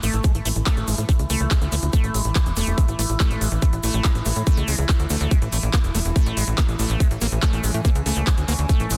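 Psychedelic trance at 142 BPM in A major, intense and alien in mood, with an up-front, tight electronic kick entering at 0.2 s alongside a crisp big-room dance kit of handclaps and hi-hats and a grainy, very quiet egg shaker. A punchy sawtooth sequencer bass with ring modulation and a plucked filter pushes beneath a squelchy, resonant acid bass riff whose filter sweeps, saturation, chorus and delay give it a liquid bite. Alongside them, a slow-attack drone of sustained chords shimmers with moving overtones, phaser and pumping sidechain, all within a dense, heavily limited modern master.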